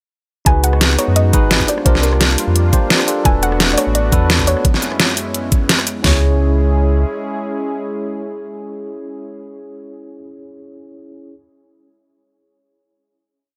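This short, complete piece of liquid drum and bass moves at 172 BPM in C# phrygian, with a lush, rolling mood and a light swing on the sixteenths. From 0.5 seconds, two layered, overdriven electronic pop kits sit up front in a small, dry room: one carries a knocking kick, deep snare, floor tom and open hat in a two-step pattern, while the other rolls along on cabasa, rim click, snare and closed and half-open hats. Beneath them, a full sub bass with an octave layer holds long gliding notes, and a smooth, detuned sawtooth pad sustains chords through chorus and sidechain pumping, moving from C#9sus4 through C9sus4, E9sus4 and F#9sus4. A tine electric piano with a clean tone, heard as if through built-in speakers, adds rootless held chords with syncopated pushes and dub echo. Sitting dark and soft in the background, a round filtered pluck with chorus and dub echo sketches short call-phrase motifs. 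At 6.0 seconds the drop resolves onto a final C#m chord. The pad fades out at 9.6 seconds, and the electric piano rings on until 11.4 seconds.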